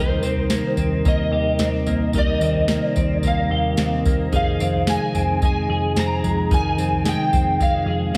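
Dream pop at 110 BPM in Eb major, ethereal and blissful, drifting from Eb6 to Fm7 as a dark, slightly broken-up slide guitar sings the melody up front through ensemble chorus and tape echo, while a flute-like tonewheel organ holds chords through a slow rotary speaker, a bright, twangy twelve-string electric guitar spins arpeggios with lush chorus and echo, a round, foam-muted picked bass anchors the low end, and an overdriven analog rhythm box with deep kick, crisp snare, tambourine and toms enters at 0.2 seconds, all soaked in a lush hall reverb in this short cut from a longer piece.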